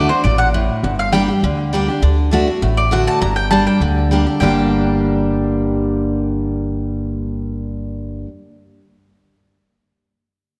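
A full-bodied, up-front picked steel-string acoustic guitar leads the ear in this short, lonesome yet driving bluegrass cut, its jumbo body and audible finger squeak carrying the accompaniment in a straight 4/4 feel. Above it, a picked mandolin with warm double strings carries the melody, touched by an analog delay. Underneath, an upright bass played pizzicato on gut strings gives a dark, thumpy, woody bottom. All three play together from the start to roughly 8.2 seconds, moving between D and G minor chords through a few brief passages. A lush hall reverb soaks the mix, giving the acoustic trio a dreamy glow.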